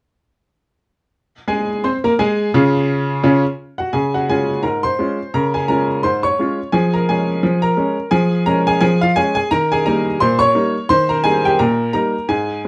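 A bright upright piano carries this lively, cheerful ragtime excerpt alone, entering at 1.5 seconds and playing until 12.7 seconds in Db major at 86 BPM in 2/4, with a light swing on the sixteenths. Its brilliant, woody tone sits up front and intimate, with audible action noise and a natural, moderate studio reverb around it. The harmony moves from Db through Db/F to Eb7 as a short opening section gives way to a longer second one at 3.9 seconds.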